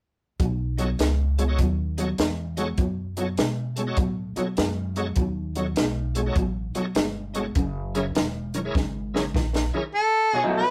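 Rollicking and swaggering, this electric blues shuffle in B mixolydian swings at 101 BPM as a twangy, slightly broken-up electric guitar riff, woody pizzicato upright bass and a dry cocktail kit with punchy kick and high-tuned snare drive over B7 to F#7, joined by a shouting tonewheel organ through slow rotary speaker, overdrive and chorus vibrato, before a drum fill from 8.7 s ushers in a smooth-topped harmonica at 9.9 s with scooped notes and tongue slaps in a rough rehearsal-room sound.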